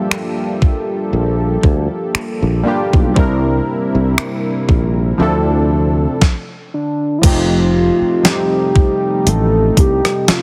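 A heavily compressed, radio-like sound with digital ambience frames this moody, late-night contemporary R&B fragment in G dorian, set at a slow 59 BPM with a light sixteenth-note swing, cut from a longer piece. Detuned sawtooth analog keys with a filter sweep and chorus carry the accompaniment over a smooth, slow-attack pad in the background, while a crisp 8-bit drum machine with a thumpy kick, fat snare, snaps and rim clicks sits up front beside a growly, bright fretless bass entering at 1.1 seconds. During a stop from 6.2 to 7.2 seconds, a round, octave-layered synth lead with vibrato enters at 6.7 seconds to take the melody as the chords move from Gm9 through C7 and Dm7 to F7.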